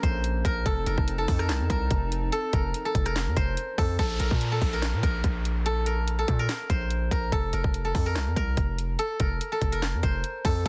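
A steel-string zither, played with fingerpicks, leads this dark, brooding trap excerpt, its silvery, ringing acoustic tone carrying the melody up front at 144 BPM in a half-time 4/4 feel, with a digital delay trailing its notes. Beneath it, a distorted 808-style bass gives a heavy, aggressive low end with a fast attack and a noise layer, while a trap drum kit of hard-clipped kick, sharp snare, metallic hats, handclaps and rim clicks sits forward in the mix. A hollow, flute-like pad with a soft attack and chorus holds sustained chords in the background through Bbm and F7 until it drops out at 4.0 seconds. From there the harmony moves to Bbsus2, and an electronic downlifter sweeps in until 7.3 seconds, when the chord shifts to F5. The whole piece rests in a digital ambience with a dense, heavily limited modern master, and it is cut from a longer track.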